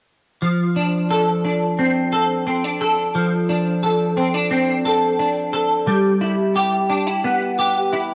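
Hazy and haunting, this short excerpt cut from a longer dream pop piece drifts at 88 BPM in a straight 4/4, centred on D dorian. A lone semi-hollow electric guitar carries it from 0.4 to 8.1 seconds, playing clean, picked arpeggios between F3 and A4. Its tone is warm and hollow-bodied, sitting up front and coloured by an ensemble chorus and analog delay. The harmony moves from Dm7 to G6 at 5.9 seconds. A moderate, lush hall reverb with a 2.4-second tail surrounds the guitar, and the whole piece was captured as a home recording on cassette.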